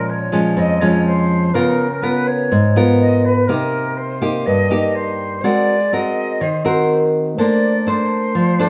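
Melancholic and intimate, this short bossa nova fragment centres on an up-front, fingerpicked nylon-string guitar with a classical touch, carrying the accompaniment through a moody run of minor-seventh and ninth chords. A distant, airy concert flute traces a second line with tongued notes and expressive vibrato. At 7.4 seconds a clean tine electric piano, heard through its built-in speakers, joins as the harmony lands on a major ninth, all set in the lush reverb of a large studio where the band plays together live.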